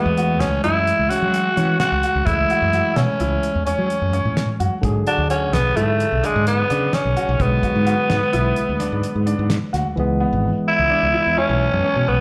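Heard through a club PA with subtle reverb, this brooding, intricate progressive instrumental in 11/8 is cut from a longer live performance, moving from F#m7 to a rootless E7 before settling on C#m7 at 10.0 seconds. A growling, raspy tenor saxophone sits up front with breathy, scooped notes and light vibrato. Beneath it a bright, barky tine electric piano accompanies, a clear baby grand piano plays arpeggios in the background, and a fretless electric bass anchors the low end, while a damped 70s drum kit with a fat snare and tight kick plays hi-hat, kick and snare until 9.8 seconds, the saxophone, both pianos and drums all carrying slapback echo.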